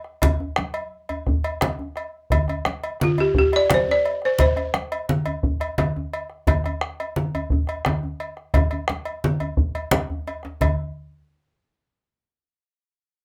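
A driving 12/8 pulse at 116 beats per minute, counted in dotted quarters, propels this festive West African drum ensemble excerpt, with a deep, dark bombo sounding from the start and ringing, hard-handed congas, a metallic cowbell and a soft-handed djembe joining at 0.2 seconds. Between 3.0 and 5.1 seconds a woody, buzzing balafon struck with hard rubber mallets plays up front in the F4 to D5 range, while the bombo and congas also sit close and forward in a small, reverberant room. A drum fill at 10.1 seconds marks the turn into a new section just before the excerpt is cut off.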